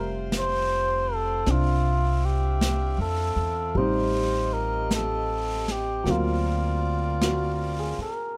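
A cup-muted trumpet carries the melody up front, its tone veiled and breathy, in this tender, romantic jazz ballad that drifts along at 52 BPM with a swung feel, cut from a longer piece. A clear, woody upright piano with short sustain accompanies while a woody pizzicato upright bass anchors the low end, and a tight saxophone section holds smooth sustained chords with light vibrato beneath. Brushes on a dark jazz kit enter at 0.3 seconds, and the close, dry sound lets every detail through as the harmony moves through Am7b5 and D7alt.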